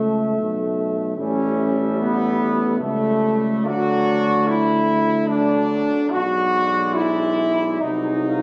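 Heard through a phone in the room, this compressed clip carries a moderate stage reverb blended with a club-like ambience around a serene, hymn-like classical passage for brass band in 3/4, moving with rubato at roughly 64-76 BPM and tuned to A4 = 436 Hz. A mellow, smooth-topped flugelhorn sings the melody over a warm French horn section in the background, while a clear, up-front trombone section with light vibrato and a bright, distant solo trombone with vibrato fill out the accompaniment. An up-front tuba with a soft attack anchors the bass as the harmony moves from A/C# through D to G#7/B# across the 8.4 seconds.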